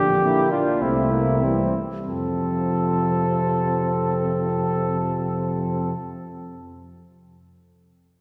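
Stately and triumphant, this short classical brass quintet fragment, cut from a longer piece, slows over its first 2.1 seconds and moves from Gm/Bb through C7 to a resolving F chord, with an up-front mellow trumpet carrying the melody in light vibrato over a smooth-topped flugelhorn second line, a deep tuba bass, a background French horn entering at 0.2 seconds, and a soft-attacked trombone singing with vibrato, all bathed in a long, wet church reverb.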